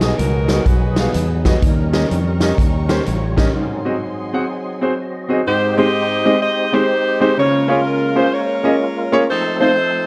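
A clear, up-front saxophone section carries the melody in this uptempo gospel excerpt at 125 BPM, swinging in 4/4 with a reverent, soulful mood. Beneath it, a polished grand piano accompanies from the start until 9.7 seconds, while a fat, lightly overdriven tonewheel organ holds sustained chords in the background with key click, third-harmonic percussion, chorus vibrato and a slow rotary speaker. A bowed studio string section adds smooth, expressive chords with vibrato and portamento, drifting behind the mix until 5.5 seconds. A round, punchy fingered electric bass and a natural, swinging big-band drum kit with a punchy kick and medium-tuned snare drive the groove until 3.5 seconds, when a break opens and the saxophones return at 5.5 seconds for a new section. The harmony moves through Cb6, Eb7 and Ab7 before settling on Abmaj7, Db6 and F7, all set in a dark production with moderate concert-hall reverb.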